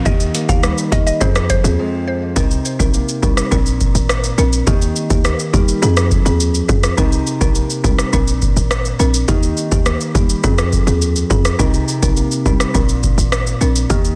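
A dense, heavily limited, nearly reverb-free mix carries this tough, hypnotic dancehall excerpt: a booming analog drum machine with a deep kick and metallic hats sits up front over a punchy, tight 808-style bass, a woody, rustic folk marimba pumps with sidechain, a thumb-plucked nylon-string guitar spins arpeggios with audible finger squeak, and a round FM synth pluck treated with chorus, phaser and digital delay plays a brief melody that ends at 1.6 seconds, just before a break at 1.8 seconds.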